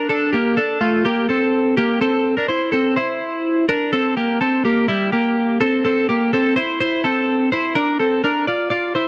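A dry, close 1970s-style studio sound with moderate booth ambience and some lossy compression artefacts frames this wistful, restless indie pop fragment, where a lone twelve-string electric guitar, bright, twangy and compressed, sits up front with clean picked chords moving from Gmadd9 to Am7, enters a new section at 5.8 seconds, and reaches Bbmaj7 at 7.8 seconds.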